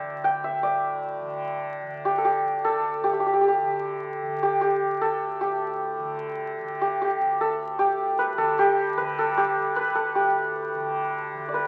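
In a straight three-beat metre, this meditative, devotional Indian classical excerpt sets a bright, hammered santur melody up front, ringing between G4 and G5 above a softly plucked, buzzing tanpura drone that sits low and far back in the mix. The melody shifts into a new section at 10.2 seconds. Moderate large-studio reverb lends space, while the sound carries the crackle and aged character of a very old 78 rpm record.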